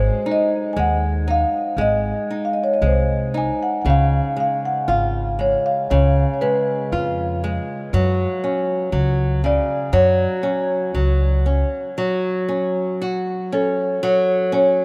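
A fado-style ballad, mournful and passionate, moves at a slow 59 BPM in 2/4 with a free, rubato feel, tuned to A4 = 439 Hz. A marimba played with soft mallets carries the melody, its mellow, round tone sitting forward in the midrange. Beneath it, a fingerpicked nylon-string guitar provides an intimate, up-front accompaniment, while a pizzicato upright bass with gut strings adds a woody, thumpy low end until it drops out at 11.6 seconds. The harmony moves from G# to C#7 at 3.9 seconds and on to F#5 at 7.9 seconds, before the opening section returns at 12.0 seconds. Heavy cathedral reverb places the performance in a vast, echoing space, and the passage is cut from a longer piece.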